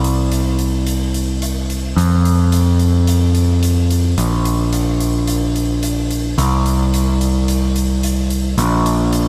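A live-in-one-room sound with light reverb frames this short excerpt of melancholic, cathartic post-rock, moving at 109 BPM in a straight 4/4. A growling picked electric bass, bright and overdriven, sits up front and carries the low end from Bb1 to F2 across the full 9.3 seconds. An acoustic hi-hat with a hall ambience plays alongside it, set far lower in the mix.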